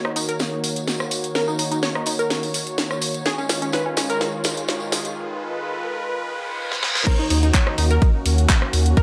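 Progressive house at 126 BPM, expansive and uplifting, this excerpt opens on a build-up where a smooth, warbling vintage pad holds sustained chords moving from D#m7 to C#add9, a lush, detuned sawtooth pluck spins arpeggios through dub echo, and a tape-warm house kit of cracking snare, handclaps, rim clicks, hats and cymbals fills alongside a jingly, close tambourine in the background. An electronic riser and reverse cymbal climb from 2.6 seconds into the drop at 7.1 seconds, where a punchy, up-front kick lands and a deep, thick, saturated sine sub bass on D#2 enters, while the pad, pluck and bass pump with sidechain.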